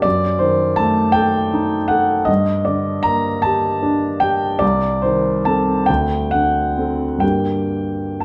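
Melancholic and wistful, this short excerpt from a romantic classical nocturne unfolds in G minor at a slow 42-55 BPM in dotted quarters, its 12/8 lilt stretched by free rubato. A clear concert grand piano plays alone, up front and smooth, with a deep bass and a vintage character, ranging from C2 to Bb5 inside the wet bloom of a large studio. The harmony drifts from a diminished opening through G minor and a D7 before settling back on G minor at 7.2 seconds.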